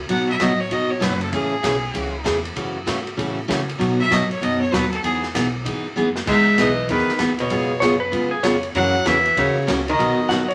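A down-home, cheerful slice of western swing cut from a longer piece, moving at a brisk 194 BPM in E major with a swung eighth-note feel. A clear, nasal fiddle with light vibrato and an airy bow takes the solo up front from the start, backed by a full-bodied picked dreadnought acoustic guitar, a woody, thumpy pizzicato upright bass on gut strings, and a polished big-band drum kit with dark cymbals, a punchy kick and a medium-tuned snare. A drum fill at 6.0 seconds leads into a new section, where a clean, dark hollow-body archtop guitar joins with a low second line. At 7.8 seconds a compressed lap steel slides in up front, adding another second line in the fiddle's register. The harmony moves through chords such as Amaj7, F#m7 and C#7 to F#7, and the whole is set in a studio reverb with a layer of vinyl crackle that gives it an old-record sheen.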